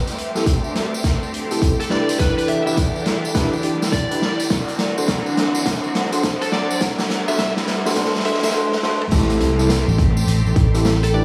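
A punchy, layered electronic kick sits up front in this swaggering, playful glitch hop excerpt at 104 BPM in 4/4, swung on the sixteenths and set in A dorian. Around it, a swinging big-band kit with a medium-tuned snare, rim clicks, hi-hat, toms and crash runs fills through the build-up, joined by a jingly, distant tambourine, both trailing dub echo. Overdriven tine electric piano stabs, gritty through a combo amp, ride a filter sweep and sidechain pumping, while a dark, picked fuzz lead guitar with 12-bit sampler grit enters at 1.8 seconds. Underneath, a swirling, thick phased saw bass, a clear bowed symphonic string section and an ethereal, airy chorused pad sit in the background over Am7, Em7, D7 and Cmaj7, with a very quiet riser adding lift. At the drop at 9.1 seconds the chords return to Am7, and the saw bass gives way at 9.9 seconds to a fingered electric bass, up front and saturated, all set in an echo-heavy mix with moderate spring reverb.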